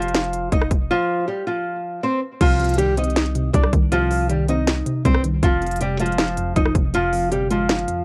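Hip hop trap excerpt, hard-hitting and brooding in a half-time feel, where a small, fingerpicked nylon-string guitar with audible finger squeak carries the melody through cassette tape grit and plate reverb, up front beside a trap kit of hard-clipped kick, sharp snare and crisp hats over a deep, mellow sine 808 bass, with a break from 0.9 to 2.4 seconds before a warbling, dusty, detuned chorus-soaked pluck joins at 2.4 seconds.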